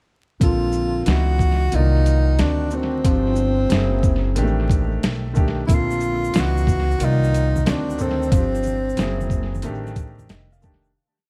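A breathy, subtoned tenor saxophone with light vibrato spins short motif-based phrases through tape echo in this mellow, smoky jazz-hop piece at 91 BPM with a swung 16th feel, over warm grand piano playing pushed drop-2 chords with grace notes, a woody, growly upright bass walking with chromatic approach notes, and a gritty, pitched-down boom bap kit with a thumpy kick and sparse quarter-note hats, while loose congas and tube shaker join softly in the background at 5.7 seconds, vinyl crackle and small-room ambience color the echo-heavy mix, a fade-out begins at 8.3 seconds and a brief piano fill closes it from 10.0 seconds.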